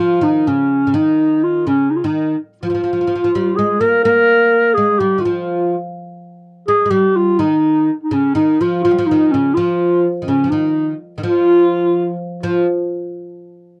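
A straight 9/8 pulse drives this hypnotic, soulful Turkish makam ensemble excerpt, cut from a longer piece. A dark, breathy clarinet carries the melody up front with vibrato, a soft subtone attack and scooped notes, while a woody, plectrum-plucked fretless oud with double strings sits lower in the mix as a deep second line. The dry, close 1970s-style studio sound has light reverb and tape saturation, and both parts play throughout until about 12.7 seconds.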